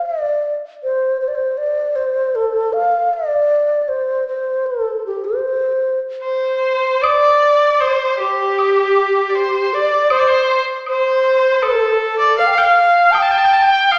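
Chinese traditional chamber music in C zhi mode, festive yet pastoral, moving at a rubato 78 BPM in this section cut from a longer piece. An airy, end-blown bamboo low xiao carries the melody up front with vibrato and a crisp attack; a solo bowed erhu, nasal and earthy with light vibrato and portamento, enters as a second line at 6.2 seconds, and a bright woodblock joins in the background at 7.0 seconds. The whole ensemble sits in a wet recital-hall reverb, heard from further back in the room with a small-speaker sound.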